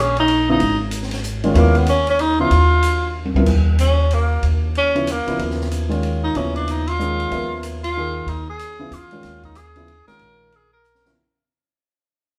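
Bathed in a wet, large studio reverb that captures a live band playing in one room, this hypnotic, intense modal jazz excerpt swings in 3/4 at 187 BPM over an Eb9sus4 chord, with a woody, thumpy pizzicato upright bass on gut strings up front, a warm grand piano accompanying, and an open acoustic drum kit of dark cymbals, high-tuned snare and boomy kick whose fill at 3.2 seconds leads into a clear tenor saxophone solo, full of vibrato, scooped notes and soft attacks, from 3.5 seconds as the recording fades out.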